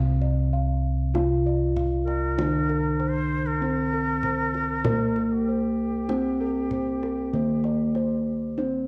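A softly ringing bronze metallophone carries the melody in this serene, shimmering Javanese gamelan passage in C slendro, moving at a slow 48 BPM in straight 4/4, while a second, background metallophone struck with padded disc mallets supplies accompaniment below it. Bossed gongs add mellow arpeggios above and a round, beating bass beneath, and a tight, vintage-sounding kendang played with soft hands comes in at 0.2 seconds. From 2.0 seconds an airy, reedy bansuri with vibrato adds a bright second line, all held in a moderate stage reverb with a dark, warm production in this short cut from a longer piece.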